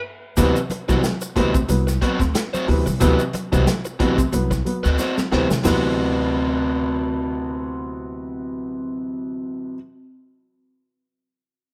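A rough home demo mix in a moderate studio reverb carries this strutting funk fragment at 91 BPM in D mixolydian, with swung 16ths and a D13 chord following an opening band accent. An up-front, crunchy overdriven electric guitar soaked in spring and plate reverb plays accompaniment over slightly detuned upright piano stabs with audible action noise and plate reverb, while a woody pizzicato upright bass sits low. A gritty, dark breakbeat kit with a tight kick, very quiet damped congas and a grainy, bright tube shaker drive the groove until a drum fill at 5.0 s; the kit stops at 5.8 s and the hand percussion at 6.0 s, leaving guitar, piano and bass to finish.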